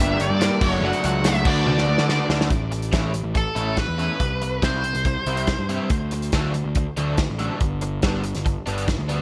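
Indie rock at 141 BPM in 4/4 and D major, this short cut from a longer piece feels wistful yet upbeat, with a bright 1980s-style digital production, light reverb and small room ambience. A dark, nasal lead guitar with a parked wah, overdrive and digital delay carries the melody until 5.7 s, while a reedy, breathing harmonium holds very quiet sustained chords and a crunchy overdriven guitar with analog chorus and delay plays a riff in the background, both stopping at 2.5 s. A bright, compressed overdriven electric guitar with ensemble chorus keeps its riff going throughout, anchored by an up-front fuzz bass that is overdriven and direct. The loose indie drum kit enters at 0.2 s with a punchy kick, medium-tuned snare, dark cymbals and gated reverb, and a drum fill from 1.7 s leads into the second section. The harmony moves from Gmadd9 through Dadd9/F# and D6, then to Aadd9, C, D and G.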